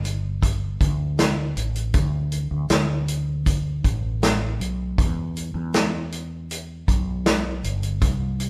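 The rhythm moves at a steady, straight 79 BPM in 4/4, setting the unhurried pace of this tender, heartfelt pop ballad fragment, which is cut from a longer piece. A natural country drum kit plays throughout the 8.5 seconds, its acoustic hi-hat, punchy kick and medium-tuned snare sitting up front with a small-room character. Beneath it, a mellow fretless electric bass holds the low end between G1 and E2, its dark, round tone heard direct and amped, close and forward in the mix. The pair sounds like a band playing live together in one room, wrapped in a wet stone room reverb with a decay of about 1.2 seconds. The recording also carries lossy compression artefacts.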